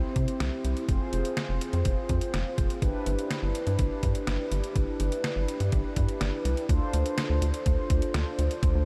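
Bright yet wistful, this short synth-pop excerpt moves at 124 BPM in a straight 4/4, with mellow synth brass opening alone at 0.0 seconds, its round, brassy, detuned sawtooth tone sitting up front with chorus and vibrato. A rubbery, hollow square bass with a resonant filter pluck and a detuned 8-bit digital drum machine, thumpy and tape-tinged with a medium-tuned snare, join at 0.2 seconds, as the chords move from C through Fm and G6. A shift to Dm7 at 6.7 seconds opens a new section, all under light reverb.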